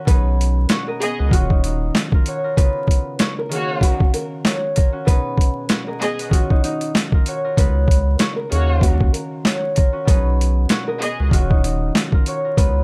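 Gritty, overdriven sampler-style boom-bap drums with a thumpy kick, high-tuned snare, hi-hat and handclaps drive this tough, moody, swung hip-hop excerpt alongside a thick saturated sub bass that sits out between 1.9 and 7.6 seconds, a mellow ringing concert harp, a dark thumb-plucked nylon-string guitar melody with tape echo, and veiled, muted string stabs with vibrato, all under vinyl crackle and light reverb over a looping B6, Ebm9 and Db9 progression.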